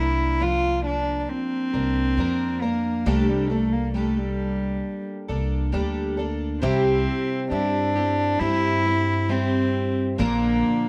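A slow, straight 4/4 pulse at 68 BPM carries this peaceful acoustic folk piece in C mixolydian, tuned slightly high at A4 = 441 Hz and cut from a longer performance. A single bowed cello sings the melody up front, played sul tasto with a soft attack, a pure, floating tone and a smooth top, set in plate reverb, and it takes a solo over the first 6.6 seconds. Beneath it, a fingerpicked twelve-string dreadnought with fresh strings rings out bright and shimmering, its octave-doubled courses filling the accompaniment. An upright bass, plucked pizzicato with a woody, dark sound, anchors the low end until 10.6 seconds. The harmony moves from Bbadd9/C to Gmadd9/C, then settles on C before turning to Bb, all in a gently reverberant room with a warm feel.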